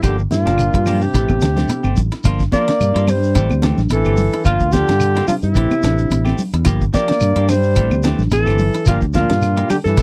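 Afrobeat at 109 BPM in G dorian with a driving, defiant swing, where a breathy alto saxophone carries the melody up front over a round, fingered electric bass and a dry, damped 70s drum kit with a fat snare and tight kick, while a clear trombone adds a smooth second line in the background, a clean electric guitar picks stabs, a silvery guzheng rings out fingerpicked arpeggios, and congas, grainy shekere and woody claves fill out the percussion, all cycling between Gm7 and Am7 in a close, dry 1970s-style studio sound.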